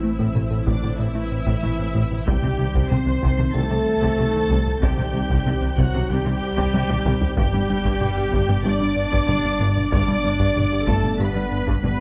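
Taiko drums struck with hard sticks drive a straight 4/4 pulse from 0.2 seconds, sitting close and dry in the background, with a drum fill between 6.7 and 7.4 seconds. This brooding, relentless passage of hybrid orchestral and electronic film score is cut from a longer piece and moves through A minor, C minor and G. High violins carry a focused, smooth-topped melody with vibrato, while a second, more distant violin line and clear, intense violas fill in beneath. Dark French horns hold tight chords, and an airy, breathy pad with chorus and a moving notch adds a soft, mellow haze. Underneath, a very quiet, tine-like FM pluck plays arpeggios, and a round square-wave analog bass riff is joined by a deep sine sub bass, a rich double bass section and a smooth, even cello section. The whole ensemble sits in a moderate concert hall reverb that lends the strings a lush, symphonic sweep.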